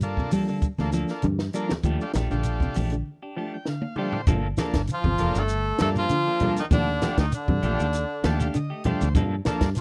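Afrobeat with a driving, defiant mood, built on a dark, round fingered bass up front, a compact cocktail drum kit with a high-tuned snare and tight kick, grainy shekere and ringing low-tuned congas in the background, while a buzzy vintage combo organ and two clean electric guitars, one picking arpeggios and one playing stabs with harmonic tremolo, fill out the groove over Gm9 and a rootless Ebmaj9#11. A break from 3.1 seconds brings a transistor organ fill and a drum fill, and at 4.9 seconds an edgy tenor saxophone takes the melody up front while a bright trombone section and a nasal, straight-muted trombone with scooped notes play a second line behind it. The dry, close sound recalls a 1970s studio, and this excerpt is cut from a longer piece.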